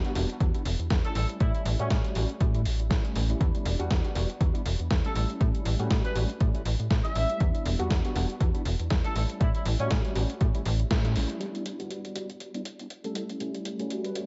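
A dark, echo-heavy mix with light reverb and a top end that stops short gives this filtered disco house excerpt a hazy, nostalgic glow, grooving at 120 BPM in 4/4 with a lightly swung sixteenth feel in E dorian. A punchy, overdriven electronic kick sits up front, joined by a gritty, compressed sampler-style kit of hi-hat and medium-tuned snare, its hats pumping against the sidechain and trailing analog delay. A snappy FM bass with a metallic, fast attack and quick decay enters at 0.2 s, pumping and low-pass filtered, while a worn, slightly out-of-tune tine electric piano, heard as if through built-in speakers, carries the accompaniment with phaser, overdrive, pumping and delay. A mellow, distant horn section with light vibrato drifts in for short melodic phrases, most fully between 5.0 and 10.0 s, over a steady alternation of Em7 and A7. A band accent lands at 10.9 s, after which the kick and bass drop away and a filter sweep carries the remaining piano, drums and a final horn phrase to the end at 14.3 s.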